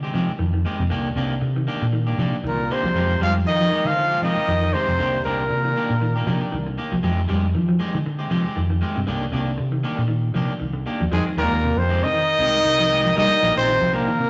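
A defiant, funky afrobeat groove opens on a clean picked guitar arpeggiating low chords, a slightly broken-up second guitar jabbing stabs, and a dark, round, punchy fingered bass, all cycling between minor ninth chords with a light swing. At 2.5 seconds the horns enter: a clear, close-miked trumpet leads up front with light vibrato, backed in the background by a trombone with scooped notes and a raspy, gritty baritone saxophone. The horns drop out at 6.7 seconds and return at 11.1 seconds, all heard through a stone-room reverb and a rough, tube-saturated rehearsal-room sound with a dulled top end.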